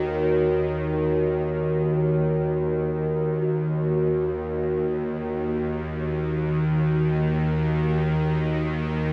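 From the first moment, a bowed-like drone and a quartz singing bowl sound together, opening this haunting, meditative world piece in free time, cut from a longer work. The drone sits low, between Eb2 and Eb3, and carries a string-like, tense quality: bright and up front, with a slow attack, vibrato, a faint noise layer, a wave-folded edge and its own built-in reverb. Above it, the singing bowl, struck with a suede striker, rings pure and clear in the range of Gb4 to Db5, its tone showing a slow beating as it sits slightly behind the drone. The whole recording unfolds in a vast, echoing space, with an ambient reverb tail of about 8.5 seconds. Both parts sustain through the full 9.1 seconds, giving the passage a suspended, contemplative stillness.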